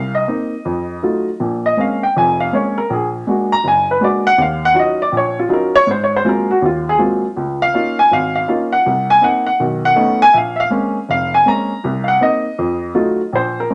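Heard in a moderate studio reverb, a natural, up-front baby grand piano with a warm tone carries this short cut from a longer jazz piece in Bb minor, swinging coolly at 161 BPM in 4/4. After a brief opening turn from Cm7 to F7b9, the piano takes a solo from 1.4 to 13.3 seconds over rich changes such as Bbm9, Ebm9, Ab13 and Db69, spanning F1 to Bb5 before landing back on F7b9.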